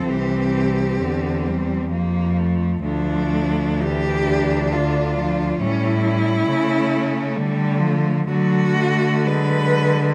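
Classical and tender, this brief excerpt for four bowed cellos in an uneven, rubato 3/4 sets a rich, focused melody up front over a smooth second line further back, a clear, even accompaniment and a clear, focused bass, all with vibrato, moving through Cadd9, F, Dm and A7 before settling on D in a moderate stone-room reverb.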